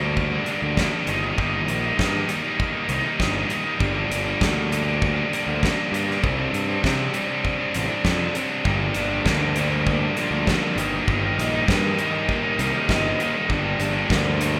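Indie rock in G minor at 99 BPM, this short cut from a longer piece has a bittersweet, cool mood and a straight 4/4 feel. A biting overdriven guitar sits up front with a dark, picked riff, while a fuzz-laden picked electric bass adds a punchy, amped growl underneath. A big acoustic rock kit with a fat snare, punchy kick and hi-hat comes in at 0.2 seconds, sounding like it was captured in a bright stone room. At 8.7 seconds a second overdriven riff guitar joins in the background, a semi-hollow body with a warm tone and a lush chorus. The harmony moves from Gm through Eb/G and Csus2 to a Gm7 and back, and the whole thing has the dry, rough character of a home demo mix.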